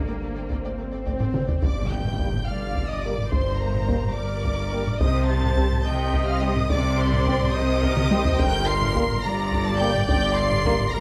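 Heard in a moderate scoring-stage reverb, this tense, futuristic excerpt of a hybrid orchestral and electronic film score moves at 71 BPM in 6/8 in G minor, with a lush, vibrato-rich violin section carrying the high melody over a second violin line, an intense, clear viola accompaniment, a distant cello section and smooth double basses in the background, dark French horns holding sustained chords, a deep, round sine sub bass, heavy-stick taiko drums entering at 0.5 s with fills, and an electronic swell that breaks into an impact at 1.6 s.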